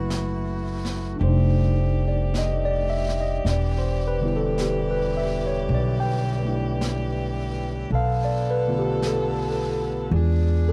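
Wistful and melancholic, this slow jazz ballad drifts at 54 BPM with a gentle swing, moving from F#m7 through F13 and Em7 toward Bm7b5 and E7b9. A clean tine electric piano, heard through a combo amp and colored by phaser and cassette tape, carries the accompaniment over a woody, growly pizzicato upright bass that sits up front, while a soft-attack saxophone section holds warm, vibrato-laden chords. Quiet brushes on snare and hi-hat enter at 0.1 s in a small, natural room, and the home cassette recording carries a light reverb.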